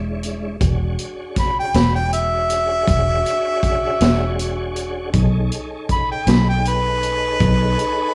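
Set in a small, lightly reverberant room, this short cut from a longer piece has an up-front, close feel, with the bass, drums and harmonica all placed forward in the mix. It is a slow blues in 12/8 with a straight feel, rollicking and swaggering in mood, moving from an E13 chord to B13 at 5.1 seconds. A smooth, clean tonewheel organ holds sustained chords through a slow rotary speaker with chorus vibrato, and a touch of key click sits under the band. A fingered electric bass, dark, round and foam-muted, anchors the low end, while a vintage acoustic drum kit with a punchy kick, medium-tuned snare, hi-hat and a rolled-off top keeps a mid-forward pulse. At 1.4 seconds a clear, close-miked harmonica enters as the jazz-style solo voice, its light vibrato roughened by overdrive and trailed by tape echo.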